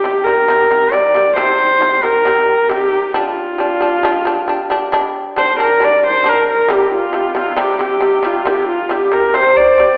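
A dark, husky horsehead fiddle carries the melody with light vibrato, soft attack, portamento and an airy bow over buzzing, percussive plectrum-plucked shamisen arpeggios in this vast, galloping Mongolian folk excerpt at 68 BPM in straight 4/4, with a pure, reedy low xiao adding a background second line from 6.7 s, all set in a wet recital hall heard from further back with a telephone-like sound.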